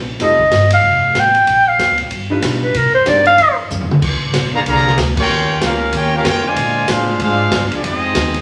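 A mellow, vintage-toned clarinet opens this joyful, energetic big band swing excerpt, its up-front solo line carrying soft attacks, subtone and vibrato over a clear baby grand piano that comps beneath it until 3.4 s, shortly before the clarinet finishes at 3.6 s. Throughout, a woody, thumpy pizzicato upright bass anchors the low end while an airy, polished drum kit with a punchy kick and medium-tuned snare drives the lively swung groove on hi-hat, ride and crash. At 3.7 s a drum fill leads into the second section, where a tight trombone section enters at 4.5 s as a second line, joined moments later by a bright, up-front trumpet section taking the melody with light vibrato. A full-band accent punctuates the brass passage. The harmony moves through rich ninth and seventh chords, and a generous large-studio reverb gives the ensemble a roomy, hall-like glow.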